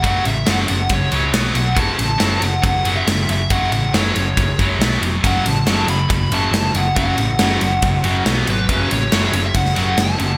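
Hard rock with a heavy, driving mood, this short clip from a longer piece moves in a straight 4/4, circling between F# minor and a B power chord. A scooped, high-gain guitar drives the riff up front with a bright, distorted edge, while a dark, overdriven lead guitar through a small cranked amp carries the melody high above, colored by analog chorus. Underneath, a hollow-body short-scale electric bass gives a round, dark, amped low end. The gated 80s drum kit sits up front with a punchy kick, a medium-tuned snare and bright ride cymbal, all caught in a stone room with gated reverb. At 5.2 seconds an overdriven semi-hollow guitar joins in the background, playing a riff with a warm, hollow tone. A lush hall reverb and bright 1980s-style digital production tie the whole together.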